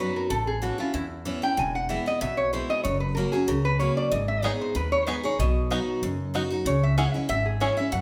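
This joyful, virtuosic bluegrass excerpt opens with a lap resonator guitar carrying the melody up front, its slide tone metallic and nasal as the fingerpicks ring out over a picked steel-string acoustic guitar and a pizzicato upright bass. The tempo is a brisk 189 BPM in 4/4 with a light swing on the eighth notes. The acoustic guitar sits close and full-bodied, its old strings giving a woody, auditorium-sized accompaniment, while the upright bass supplies a warm, woody low end. At 4.4 seconds a fingerpicked bluegrass banjo joins with a second melodic line, twangy and percussive, before dropping out at 7.7 seconds. The harmony moves through Aadd9, E, F#, G#m, B and C#m, and the band, playing live together in one room, is bathed in a generous large-studio reverb.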